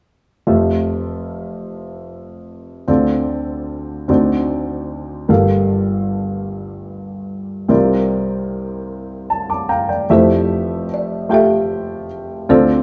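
A slow 6/8 pulse sets the pace for this uplifting, hopeful gospel fragment, cut from a longer piece. A baby grand piano carries the accompaniment from the start, its intimate, up-front tone marked by audible action noise and a short, natural sustain. It moves through rich chords, from Fmaj9 through Dm7, D7b9, Gm9 and C9sus4, before a piano fill at 8.9 seconds leads into a new section. At 10.1 seconds the harmony returns to Fmaj9 and a folk marimba played with medium mallets takes the melody, its hardwood bars sounding woody, dry and rustic with a boxy, small-room character. The band plays live in one room, wrapped in a wet large-studio reverb, and both parts run until the fragment ends at 12.8 seconds.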